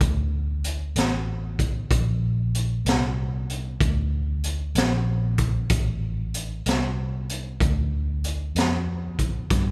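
A slow, straight 12/8 blues groove carries this soulful, brooding excerpt, where a gritty, saturated garage drum kit with a boomy kick, high-tuned snare and hi-hat sits up front beside a dark, round, foam-muted fingered electric bass, both washed in the long reverb of a church-like hall for the full 9.7 seconds.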